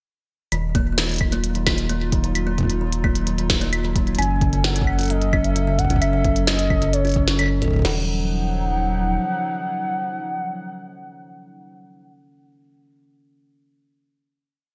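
Bright 1980s-style digital production and a moderate plate reverb frame this short, cerebral and eerie IDM piece at 131 BPM in 4/4, moving from Ebmadd9 to Gbm and back. A hollow, flute-like pad with chorus sustains chords, and a woody kalimba through digital delay runs a five-step arpeggio loop that drifts against the bar. Beneath them, a round sine sub bass with tube saturation holds the root up front, and two glitchy electronic kits keep the beat ever-changing: one has clicky hats, claves and a tiny snare under gated reverb and delay, the other a deep broken kick, snare and crash. At 4.2 s a velvety, wave-folded sawtooth lead with chorus, vibrato and delay enters with arching motifs, and from 7.8 s it continues over the final chord with the pad until 11.8 s.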